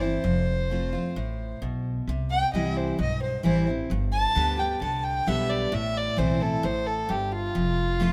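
Honky-tonk and classic country at an easygoing, heartfelt 132 BPM in C major, this short cut from a longer piece features a dark, woody fiddle carrying the melody up front with light vibrato, taking a solo from 2.1 seconds over chords moving through F, C, G and A minor. A full-bodied picked dreadnought acoustic guitar sits up front in the mix as accompaniment, while a growly, thumpy pizzicato upright bass anchors the low end. Light reverb gives the trio a modest sense of room.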